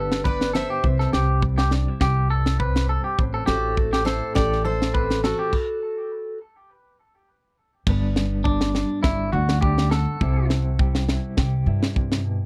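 A dry, close 1970s-style studio sound frames this danceable highlife guitar band in G major at 102 BPM in 4/4, with a lightly swung 16th feel. A full-bodied, picked steel-string acoustic guitar carries the melody until 6.4 s over a dark, fingered electric guitar with tremolo, a twangy, compressed clean electric guitar tracing arpeggios through tape echo, a woody, thumpy pizzicato upright bass, and a tight funk kit with a high-tuned snare and punchy kick. After a stop at 5.5 s, the clean electric guitar steps forward for a solo from 7.9 s as the chords move from G to C.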